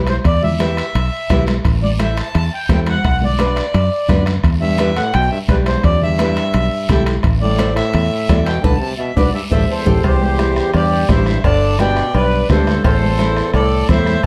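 A straight 4/4 cumbia pulse at 171 BPM drives this passionate, danceable excerpt in A dorian, built on a soft-beater bombo, ringing high-tuned congas in the background, a raspy, distant guiro, very quiet metal-shell timbales and cowbell, a punchy, foam-muted fingered electric bass up front and a fingerpicked nylon-string guitar with audible finger squeak, while a reedy, boxy accordion carries the melody with slapback echo, a bright, close-miked trombone adds a vibrato-laden second line from 4.6 seconds, and a band accent at 8.6 seconds leads into a new section at 10.0 seconds, all in a dark production with moderate studio reverb.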